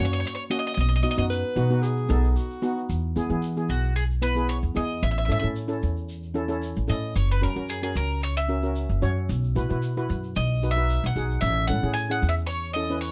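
A straight 4/4 calypso groove carries this festive, carefree excerpt from a longer piece, anchored by an up-front, woody pizzicato upright bass and a grainy, compressed tube shaker, while a soft, shimmering steel pan played with rubber sticks fills in a mellow accompaniment. A bright, picked bowl-back mandolin carries the melody up front, and a clear alto saxophone adds a short jazz-style line with vibrato and scooped notes from 1.3 to 2.9 seconds, before the mandolin takes a solo from 2.9 seconds to the end. The dry sound keeps every part close and distinct.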